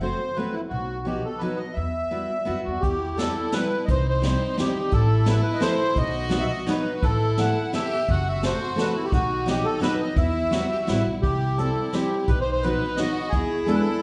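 Nostalgic and whirling, this rubato musette waltz in E harmonic minor at 172 BPM sets a sweet, reedy accordion melody with light tremolo tuning up front over a woody, picked steel-string acoustic guitar and a pizzicato upright bass, with a clear, bowed violin second line and a distant brush drum kit with a boomy kick and high-tuned snare entering at 2.8 seconds, all heard from further back in a wet recital hall, moving through chords such as Emadd9, C and Asus2 before closing on E7 in this excerpt from a longer piece.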